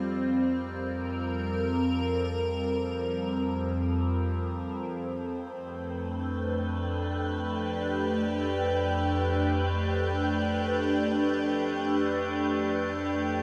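A dreamy, reverb-soaked mix with a cassette-tape character and a long plate reverb opens this peaceful, weightless ambient piece in free time and F lydian, cut from a longer work. Up front, an evolving, morphing wavetable pad holds sustained chords with slow attacks and long releases, its unison tone colored by chorus and phaser, moving from Fsus24 to C5/F at 4.8 seconds and G7/F at 10.8 seconds. At 5.7 seconds a breathy, wind-like tuned noise texture drifts in high in the background, airy and sustained under a subtle chorus.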